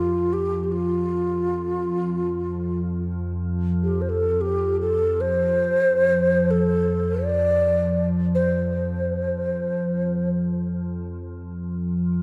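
World meditative music in free time and F major pentatonic, this spacious, peaceful excerpt pairs a breathy, bright low xiao melody with soft attack, vibrato and an unsteady, up-front tone under a diffuse ambient delay until 10.3 seconds, over a glassy, ethereal FM pad drone with ensemble chorus, a slow attack and a sustained tone with a long release that rings on to 12.2 seconds, all set in a wet scoring-stage reverb within a dark production.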